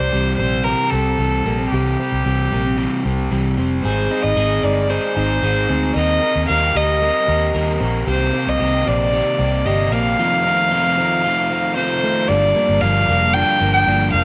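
Bittersweet and restless, this indie pop fragment sets a reedy, gut-string violin melody with slapback echo up front over bright, twangy twelve-string electric guitar arpeggios, also carrying slapback echo, alongside a crunchy overdriven guitar accompaniment and a dark, round, foam-muted fingered bass; all four play throughout in a moderate plate reverb as the chords move from C through Ab, Eb6, Cm7 and F7 to Gm7.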